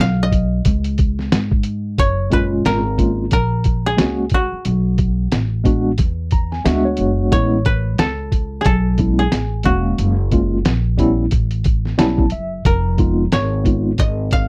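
This dry, close recording has the feel of a 1970s studio, in a warm, cool jazz-hop vein with a swung hip hop groove. A mellow koto, plucked with fingerpicks, carries the melody and takes a short solo in the opening break, while a pizzicato upright bass with steel strings sits up front with a woody tone. A sampler-style drum kit, compressed, pitched down and muffled, enters at 0.3 seconds with a thumpy kick, a medium-tuned snare and hi-hat, all carrying a tape-warm character. A worn, slightly out-of-tune tine electric piano arrives at 2.3 seconds, clean but run through a combo amp with medium tremolo, and it adds fills at 6.0 and 11.7 seconds. The harmony drifts through lush jazz chords such as F#maj9, Bm7, E7, Amaj7 and A9 before landing on Fm7b5, and the passage is cut from a longer piece.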